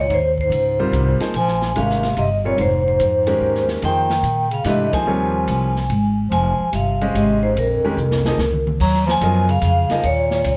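Searching and intense, this modal jazz excerpt swings in 3/4 at 145 BPM in Bb dorian, cut from a longer piece and colored by a worn, warbling cassette-tape sound with pitch drift and light reverb. A metallic, ringing vibraphone with medium hard mallets and fast motor vibrato carries the melody, while a clear bass clarinet with light vibrato and scooped notes plays a second line beneath it. The pizzicato upright bass sits up front, woody and steel-strung, and the acoustic drum kit sounds from a small room with dark cymbals, a medium-tuned snare and a boomy kick. A clear, natural grand piano joins the accompaniment at 0.8 seconds. The band hits an accent at 4.9 seconds, and a drum fill leads from a Bb9sus4 harmony into Ebm11 at 8.8 seconds.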